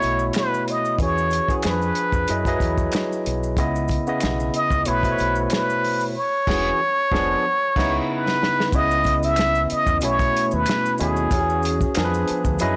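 Neo-soul and R&B in C# minor at 93 BPM, this sultry, introspective excerpt from a longer piece moves with a light sixteenth-note swing. A plunger-muted trumpet carries the melody up front in a jazz style, its wah-wah tone colored by light vibrato and scooped notes, and it drops out at 11.9 seconds. Beneath it, a barky tine electric piano, bright and lightly overdriven through a combo amp, comps through rich chords such as B9sus4, E69, Fdim7 and C#m9, while a deep, round fingered bass adds dark weight with transformer saturation. A muffled, lo-fi soul drum kit with dark cymbals and a tight kick sits alongside quiet maracas, finger snaps and group handclaps in a small room. The band hits accents from 6.1 seconds, capped by a drum fill that leads into a new section at 8.7 seconds, where a very quiet, hollow, flute-like pad enters with mellow chorused chords. The whole recording is blown-out and overdriven, with light reverb and small room ambience.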